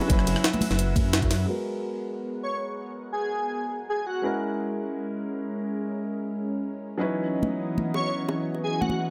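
A straight 4/4 pulse at 174 BPM drives this melancholic, soulful liquid drum and bass fragment in G# minor. It opens on a drop where close, dry bongos and congas play briefly alongside an overdriven, knocking electronic kick, a gritty, pitched-up jungle sampler kit with high-tuned snare, hi-hat, ride and rim click, and a rumbling detuned saw bass; the kick, kit and bass hit a band accent at 1.1 seconds before the drums and bass fall away. A muted, felt-softened upright piano with dub echo and a lush, warbling chorused pad with sidechain pumping carry the chords from F#7sus4 through G#m9, A#m7b5 and C#m11, both under a filter sweep from 1.5 seconds, while an airy, dreamy lead with chorus and dub echo floats in at 2.4 seconds, the hand percussion returns near the end, and the mix sits in light reverb.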